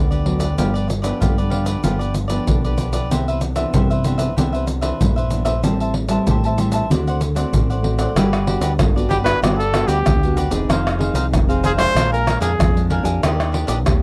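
Samba and choro in G major at 95 BPM, festive and joyful, where crisp picked cavaquinho, full-bodied fingerpicked nylon-string guitar and a round, punchy fingered electric bass ride over up-front pandeiro, tamborim, egg shaker and deep surdo in a dry, close 1970s-style studio sound with light reverb, and a clear jazz-style trumpet with vibrato takes a short solo at 9.1 seconds as the harmony shifts from Gmaj7 through Fm7 and Bb7 to Ebmaj7.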